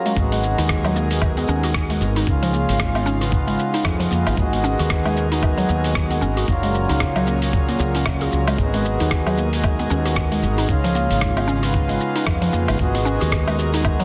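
Meditative and mystical, this organic downtempo excerpt moves at 114 BPM in 4/4 with a swung sixteenth-note feel, set in G# dorian and cycling through G#m7, C#7 and F#maj7. A reedy, breathing pedal harmonium, close and dry, carries the accompaniment with sidechain pumping and digital delay, while an airy, breathy pad with a slow attack and long release holds sustained chords under chorus and its own pumping. A woody, warbling mallet-like synth pluck with a fast attack and mellow decay spins arpeggios through chorus and delay from 0.1 seconds. A gritty, tape-touched sampler-style kit of hi-hat, rim click, shaker and woodblock, with soft clipping on the snare, is soon joined by a thumpy electronic kick, both set in studio reverb. Anchoring it all is a growly, round fretless electric bass with a hollow-body character, bathed in lush chorus and sitting forward in a dense, heavily limited modern master with light reverb and digital ambience.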